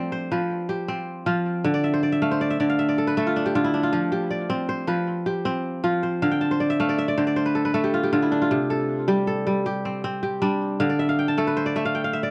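Warm and hypnotic, this short excerpt of West African traditional music features a solo kora at 105 BPM in a straight 12/8, fingerpicked in F lydian with a ringing, crisp tone up front in a dry, close 1970s-style studio sound with light reverb and tape echo, as fills at 1.7, 6.2 and 10.8 seconds decorate chords moving from F and Dm to C5 and D5.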